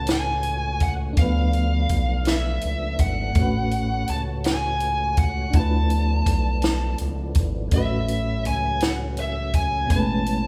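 Sensual and unhurried, this slow six-eight R&B passage sets a dark, distorted, picked lead guitar melody over a mellow FM electric piano with tremolo, a lightly overdriven tonewheel organ with key click and slow rotary speaker sitting in the background, a round, deep analog bass, and a dry, up-front cocktail drum kit with a high-tuned snare and tight kick, all within a moderate recital-hall reverb as the harmony moves between A69 and Dm6 before resolving to Amaj9 at 9.9 seconds.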